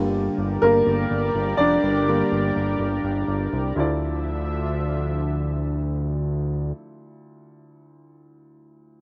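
A clear, woody upright piano with slapback echo sits up front, carrying the accompaniment in this bittersweet, dramatic pop excerpt at 124 BPM in D minor. Beneath it, a fat analog bass with a detuned sawtooth tone and a filter sweep and a lush, chorused unison pad holding slow-attack chords both stop at 6.7 seconds, and the piano rings on alone until 9.0 seconds. The harmony moves from Gm to Dmadd9 at 3.8 seconds, in a dry, open-air sound with little reverb.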